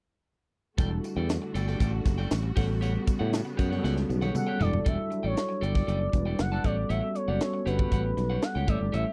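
Bittersweet and nocturnal, this short cut of polished 1980s jazz-funk pop rides a straight 4/4 groove from a crisp, airy fusion drum kit with a high-tuned snare and punchy kick, an up-front growly fretless bass, a mellow tine electric piano with subtle chorus, and a slightly broken-up picked guitar riff, while lush bowed strings and a jingly tambourine sit in the background, the tambourine until about 4.7 seconds and the strings until about 4.9. During a drum fill, a smooth sawtooth lead with soft attack, vibrato and portamento takes the melody from 4.4 seconds over Em11 and A13 chords. The sound is dry and close, in the manner of a 1970s studio.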